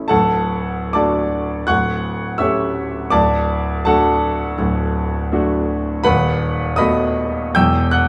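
Romantic classical character piece for solo piano in D major, moving at 67-85 BPM in 4/4 with a rubato feel and a passionate, warm mood. A clear baby grand piano sits up front with an intimate, natural tone and audible action noise, spanning D1 to G6 in a small room with light reverb. In this short excerpt cut from a longer piece, the harmony moves from D through A7/D and back to D, then turns to B7/D# at 6.1 seconds before settling on Em at 7.6 seconds.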